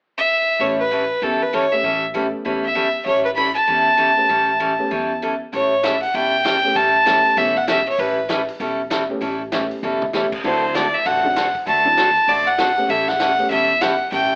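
Playful and down-home, this swung western swing cut opens with a clear, earthy fiddle carrying the melody up front, backed by a bright picked dreadnought guitar, a dark, boxy upright piano and a woody pizzicato upright bass sitting in the background. A vintage drum kit with dark cymbals and a punchy kick enters at 5.5 seconds, adding a short fill at 9.8 seconds just before the fiddle returns at 10.4 seconds over chords moving from A9 to D9 and A7. Wet studio reverb and an AM radio sound give the whole band a nostalgic, broadcast quality.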